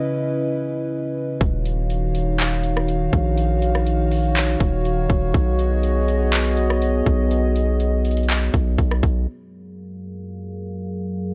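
A dark, detuned analog pad opens this blissful, dreamy stretch of atmospheric cloud-rap on its own, its slow-attack chords shimmering with chorus and breathing with sidechain pumping under a low-pass filter. At 1.4 seconds a deep, sine-toned 808-style bass and an overdriven trap kit arrive up front in a half-time feel, the kit bringing a hard-clipped kick, metallic hi-hats, handclaps and rim clicks. After these drop away near 9.3 seconds, a filter sweep carries the pad alone into a closing major-seventh chord, all captured with a dry, gritty hardware sound.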